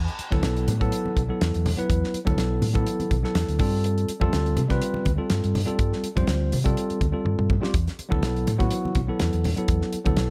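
A dark, round, punchy hollow-body bass opens this intense, funky electric jazz fusion excerpt, joined almost at once by an up-front 70s drum kit with a dry, fat snare and tight kick, swinging lightly on the sixteenths. A clean tine electric piano heard through its built-in speakers supplies the accompaniment over a shift from Esus4 to G9sus4 and back, while very quiet, low-tuned congas with a thick, damped skin sit in the background. A drum fill at 7.3 seconds marks the return to Esus4, all set in a small room with light reverb.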